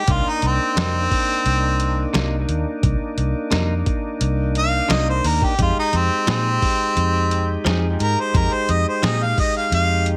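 Straight-eighth soul blues with a mournful, brooding mood, cut from a longer piece. A warm, up-front harmonica carries the melody as a jazz-style solo throughout, with light vibrato, soft attacks and scooped notes, roughened by overdrive and set in plate reverb. Beneath it, a reedy tonewheel organ with key click and a slow rotary speaker holds the accompaniment, lightly overdriven, while a dark, round, foam-muted fingered electric bass sits punchy and up front. A lo-fi sampler-style drum kit, compressed, pitched down and muffled, supplies a thumpy kick, a medium-tuned snare and hi-hat, given extra grit by overdrive. A twangy, clean electric guitar, recorded direct and compressed, adds picked stabs from 0.8 to 9.2 seconds through plate reverb and analog delay, as the harmony moves from Cm7 to Fm7 at 5.6 seconds.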